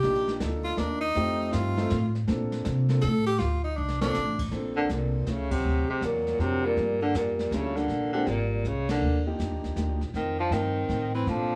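Set in a small room with light reverb, this swinging jazz excerpt at 160 BPM in 3/4 and Bb major opens with a close-miked tenor saxophone soloing with vibrato for the first 4.5 seconds, over an intimate grand piano whose action noise is audible, a woody, thumpy upright bass sitting up front, and a dark brushed kit with a rolled-off top. After a drum fill at 3.8 seconds, a vintage-toned baritone saxophone takes the lead at 4.8 seconds, its subtone and scooped notes close and prominent. Band accents punctuate the passage as the harmony moves through Ebmaj9, F7, D7alt and Gm9.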